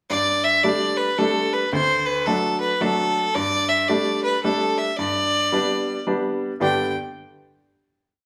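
A clear, earthy fiddle leads this rollicking Celtic waltz, a single bowed player up front with light vibrato, spinning a motif-based melody built in sentence-like phrases. Beneath it, a bright, brilliant baby grand piano, natural in tone and also up front, plays an oompah accompaniment of bass notes and chord figures. The piece moves in 3/4 at 111 BPM in G major with a swung eighth-note feel, and its harmony passes from Gsus2 to D and back to Gsus2 before settling on G. Both parts play from 0.1 to 6.9 seconds through a single lively section, then a final chord rings out to the close at 8.2 seconds. The band sounds as if playing live together in one room, bathed in a wet, large studio reverb.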